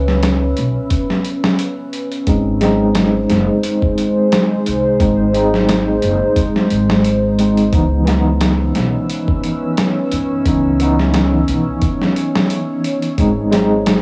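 Gritty, overdriven sampler-style drums with a thumpy kick sit up front in this hypnotic, dark trip hop fragment, over woody pizzicato upright bass and a deep, warbling ambient pad with chorus and reverb sustaining C#m7 and G# chords, while a worn, slightly out-of-tune tine electric piano with tremolo, lo-fi sampler grit and tape echo enters at 2.3 seconds, all colored by a home cassette recording's small-room reverb.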